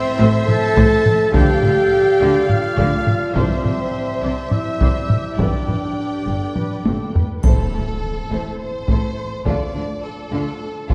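A relentless 7/8 pulse at 208 BPM drives this dramatic, epic orchestral film-score excerpt in D dorian, with an up-front, saturated taiko ensemble on hard sticks entering at 0.5 s, a brief soft-malleted timpani hit on D3, a drum fill leading into a huge, bright impact at 7.4 s, and a faint triangle. A lush bowed violin section carries the melody over a second violin line, an airy flute soaring high until about 7.1 s, mellow French horns and distant woodwinds holding chords, a barely audible dark trombone section, portamento-tinged violas, and focused cellos and smooth double basses anchoring the low end. The dark production sits in a long, wet concert-hall reverb as the harmony moves from Am through Dm, Cadd9 and G before returning to Am and Dm.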